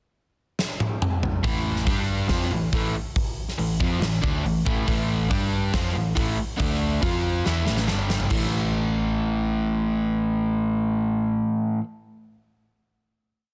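Driving straight 4/4 at 140 BPM, this short, menacing and heavy hard rock piece in A minor opens with a pickup-bar fill from a huge arena drum kit with bright cymbals, a fat snare and a punchy kick in a big half-time groove, before an up-front, double-tracked overdriven semi-hollow guitar arrives at 1.4 seconds with a picked power-chord riff, doubled by a dark, round hollow-body bass playing driving eighth notes; after a second fill the drums stop at 8.4 seconds while guitar and bass ring out on a final A5 chord in a dense, dry, heavily limited modern master.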